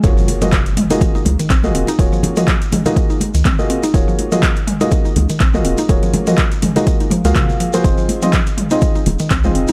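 A swung 123 BPM afro house groove in 4/4 opens this spiritual, warm excerpt on a drop, with a punchy, overdriven electronic kick up front, a gritty deep house kit of handclaps, metallic hats and toms, congas entering at 0.3 s and a grainy shekere in the background, under a deep, round sine sub bass, a woody FM mallet-like pluck playing chorused arpeggios, and soft felt-muted upright piano stabs with audible action noise, both pumping with analog delay, while a background electronic impact marks the first 2.0 s and the chords move from Ebm11 to Fm7 at 7.8 s in a dry mix.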